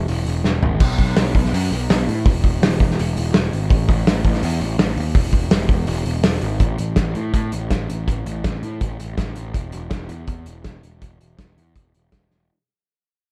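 A straight 4/4 indie rock groove at 165 BPM drives this upbeat, carefree excerpt, where a loose acoustic drum kit with dark cymbals, a punchy kick and a pumping room sound throws in an early fill at 0.4 seconds, while an overdriven, fuzzy picked electric bass rumbles up front between E1 and A2 in a dry, dark production that fades out from 6.6 seconds to the end at 12.5 seconds.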